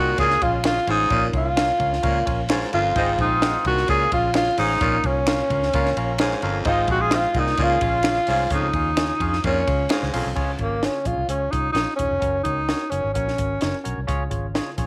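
This is a danceable slice of uptempo 1960s-style soul in a straight 4/4, cut from a longer piece and opening with the breathy tenor saxophone, barky tine electric piano, growling baritone saxophone and muted electric bass all sounding at once. Up front, the tenor carries the melody with a whispered, intimate tone, soft attacks, scooped notes and vibrato, while the baritone digs into a low, raspy riff that lasts until about 10.3 seconds. The lightly overdriven electric piano sits in the background, adding a fill between 5.7 and 6.7 seconds. Beneath them, the round, foam-muted bass joins a compact cocktail drum kit with a punchy kick, a high-tuned snare and dark cymbals, while a mellow, distant horn section plays a tight second line until 8.0 seconds and a very quiet, close finger snap marks time. The harmony circles Db, Bbm and Ab before shifting to Gb in the closing stretch, and a moderate plate reverb blended with a small room gives the whole a roomy, period glow.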